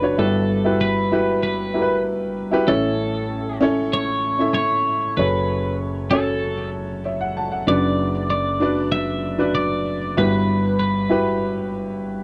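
A dry, close studio sound with a 1970s character and a touch of light reverb frames this short, driving and bittersweet pop excerpt in straight 4/4. A smooth, vintage grand piano sits up front with the accompaniment, ranging from deep bass notes into the upper register through a progression that passes from Emadd9/G through A, F#m and Bm/F# before returning to Emadd9/G. Alongside it, a clean, twangy, compressed twelve-string electric guitar carries the picked melody with tape echo, stopping at 11.7 seconds just before the piano ends at 12.2 seconds.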